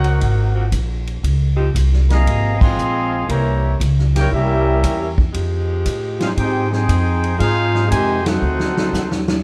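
A medium swing groove in four drives this dramatic big-band jazz fragment, cut from a longer piece, with a punchy kick, medium-tuned snare, hi-hat, ride and crash cymbals sounding roomy and somewhat distant, their top end rolled off. The upright bass sits up front with a woody, pizzicato tone on steel strings, anchoring rich extended harmonies that move from ninth chords through an altered dominant and a minor ninth to another altered dominant. The trumpet section carries the melody with a clear, tight, vintage sound, soft attacks and light vibrato, while the trombone section shapes a clear, tight second line beneath it. Tucked in the background, the saxophone section holds sustained chords with a warm, vibrato-laden ensemble blend until 8.4 seconds. The full band punches out accents at 2.5 and 8.2 seconds, and a drum fill closes the passage, all set in light reverb with a dark, warm production.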